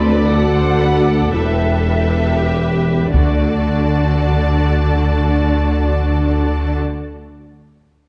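In free time, this short cut from a longer piece of epic orchestral film score unfolds in D major with a triumphant, heroic mood, its harmony moving from D to E minor and back to D. A focused, warm violin section carries the melody with vibrato, while a distant second violin section adds a lush line above and around it, and an intense viola section fills the middle with bowed accompaniment. Dark French horns hold sustained chords in the background, and the low end is built from an expressive double bass section, a smooth cello section set back in the mix, and a mellow, roomy tuba with a soft attack. Solo taiko drums, struck with heavy sticks and sounding close and dry, break in between 3.1 and 4.1 seconds as the loudest voice. The scoring stage reverb lends the dark production a moderate sense of space.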